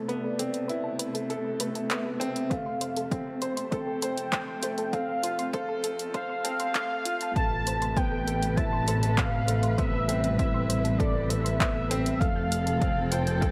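A velvety, chorused synth lead floats over a distant, dark chamber string section in this hypnotic, cinematic piano-and-strings electronica excerpt, cut from a longer piece and set in A minor at 99 BPM in a straight 4/4. A clear, woody upright piano plays a riff with long sustain and digital delay, while a soft, round pluck sits in the background with detuned arpeggios that carry chorus, delay and sidechain pumping. The bowed strings hold sustained chords with expressive vibrato and their own sidechain pumping, and during the build-up in the first 7.4 seconds both the strings and the lead move through filter sweeps. An overdriven deep house kit of handclaps and high-pass-filtered hats runs from the start, joined by a punchy, overdriven electronic kick at 2.5 seconds. At the drop at 7.4 seconds a lush, up-front bowed double bass section enters low in the range with smooth vibrato and sidechain pumping, as the harmony moves between Amadd9 and F in a small room with echo chamber reverb.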